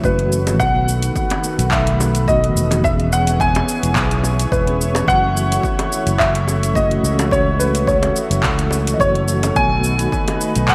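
A relaxed, wistful sunset chillout groove at 107 BPM in 4/4, swung on the sixteenths, is driven by a punchy, overdriven electronic kick and a deep house kit of metallic hi-hats, cabasa and handclaps, with round, low-tuned bongos played with soft hands sitting in the background from 0.5 to 10.4 seconds. Over F#m7, B7 and E6 chords in F# dorian, a dark, intimate concert grand carries the melody up front, its action noise audible and its tone coloured by analog chorus, delay and shimmer reverb. A mellow tine electric piano, a thick, warbling detuned unison pad and a growly fretless bass fill out this bright, 1980s-style digital production bathed in a lush hall reverb, cut from a longer piece.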